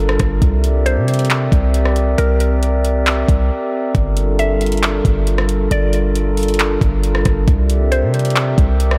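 A dreamy mix soaked in moderate cathedral reverb gives this short cut from a longer piece of atmospheric cloud-rap an ethereal, hazy air. It moves at 136 BPM in 4/4 with a half-time feel, tuned slightly low at A4 = 439 Hz. A glassy, pure glass harmonica holds slow-blooming sustained chords with a gentle beating shimmer, pumped by sidechain, while a deep, boomy 808-style bass with a sine core and a thin noise layer sits up front beneath it. The smooth R&B drum kit enters almost at once, pairing a knocking kick with metallic hi-hats, handclaps and rim clicks that sound produced yet re-recorded in a small room. From 0.9 seconds a woody, round, mallet-like FM pluck traces a soft melody in the background, dressed in chorus and delay. The chords move from C7 to Gm7 and back to C7, with a brief break from 3.5 to 3.9 seconds.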